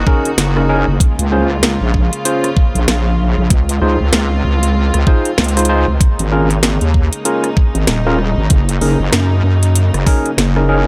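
A barely audible impact opens this funky, gritty glitch hop excerpt at 96 BPM with a swung sixteenth feel, as a dark, floating studio string section sustains bowed chords with sidechain pumping beneath a heavy, saturated wobble bass thick with chorus, while a bright, barky overdriven tine electric piano stabs through vintage 12-bit sampler grit and digital delay over an up-front knocking kick and a tape-warm kit of cracking snare, metallic hats and rim clicks, all moving through Gb6, Bbm7, Dbmaj7 and Eb7sus4.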